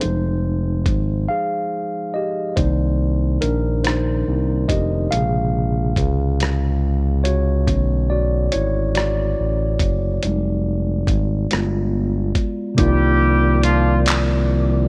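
A mellow tine electric piano opens this sultry, yearning slow R&B passage in six-eight at 47 BPM, playing a solo line over a smooth, detuned synth bass and a gritty, compressed sampler-style drum kit with handclaps, hi-hat, rim click and a thumpy kick. A silent gap falls in the piano solo from 1.3 to 2.6 seconds, and the harmony moves through lush minor ninth chords, Fm9 to Cm9 to Bbm9 and Bm9, then back to Fm9, before a G7b9 builds tension and resolves to Cm11. At 12.8 seconds a soft, flute-like tonewheel organ enters in the background with second harmonic percussion, chorus vibrato and a slow rotary speaker, while a clear, vintage horn section punctuates with stabs doubled in octaves and touched by slapback echo. The drums drop away at 14.3 seconds, leaving piano, bass and organ to close this fragment cut from a longer piece. Light reverb gives the up-front keys, bass and drums a gentle sense of space.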